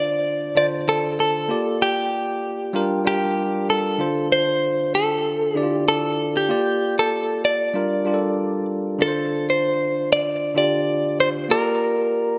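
A lightly swung 16th-note groove in 4/4 at 96 BPM sets a hypnotic, smooth afrobeats feel in D minor, tuned slightly low to A4 = 439 Hz. A direct-recorded clean electric guitar carries the melody between G4 and D5, its picked, compressed tone sitting up front with spring reverb and tape echo. Beneath it, a bell-like tine electric piano supplies accompaniment from D3 to D5, sounding bright and clean with a direct, forward presence. The harmony cycles through Dm7, Bb6 and Gm7, and a new passage starts at 9.0 seconds with a return to Dm7. Near the close, the electric piano adds a short fill at 12.1 seconds. The whole passage sits in a light reverb and digital ambience, and it is cut from a longer piece.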